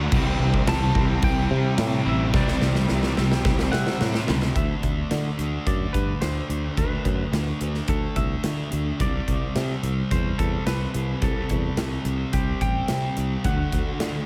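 Wistful and blissful, this excerpt from a longer shoegaze and dream pop rock piece moves in a straight 4/4 over chords of Cadd9, D5, C and D. An up-front, dark fuzz guitar bathed in lush chorus drives a riff throughout, over a growly fretless electric bass and a big acoustic rock kit with bright cymbals, a medium-tuned snare and a boomy kick. In the background, a warm overdriven guitar with reverse reverb and a double-tracked distorted guitar add picked riffs to the opening, which closes on a drum fill. Both background guitars drop away near 4.5 seconds, and the overdriven guitar returns at 13.4 seconds. From 0.7 seconds, a clean hollow-body electric guitar carries a high picked melody, colored by subtle chorus and tape echo. Light studio reverb lends the whole mix a gentle sense of space.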